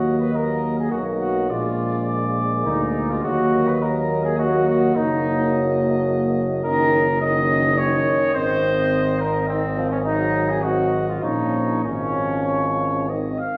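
A grave, heroic classical brass quintet excerpt opens with all five parts together in a rubato three-beat feel: the distant, mellow trumpet carries the melody with light vibrato above the warm flugelhorn's up-front second line, while a soft-attacked, vintage-tinged euphonium and a background French horn fill in the accompaniment over a clear, forward tuba bass, the ensemble set in a roomy recital-hall reverb until the trumpet's last note ends at 13.6 seconds.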